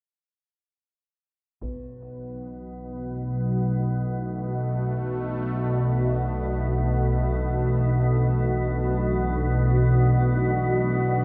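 Unsettling and ominous, this dark ambient drone in B minor drifts in free time, tuned to A4 = 443 Hz, and is cut from a longer piece. At 1.6 s a brief taiko ensemble strike with hard sticks, its acoustic small-room sound dulled by a low-pass filter, opens a single B minor chord. A quartz singing bowl begins ringing there too, very quiet, pure and meditative, with slow beating. A sweeping, resonant pad fades in at the same moment, holding sustained chords of detuned sawtooth tones with a noise layer and filter swell, airy and bright through chorus and shimmer reverb. From 2.2 s an organ-like drone sits up front in the low register, calm yet warbling, a vintage detuned sine unison with slow attack and long release, thickened by ensemble chorus. A drenched echo chamber reverb with a 2.1-second decay wraps the mix in heavy echoes.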